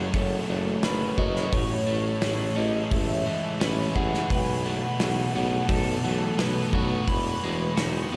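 Drenched in a huge ambient reverb with a seven-second tail, this short dreamy, wistful shoegaze and dream pop piece drifts at 86 BPM in A lydian, moving through F#m, Amaj7, B7sus4 and Emaj7. A velvety, full-bodied synth lead carries the melody with chorus, vibrato and analog delay, while a bright, twangy twelve-string electric guitar plays compressed arpeggios in the background through subtle chorus and delay. Up front, a crunchy overdriven guitar riff with reverse reverb and a loose indie drum kit with a punchy kick and pumping room sound, entering at 0.1 s, sit over a dark fuzz guitar riff in the background and a distant, roomy tuba bass with light vibrato.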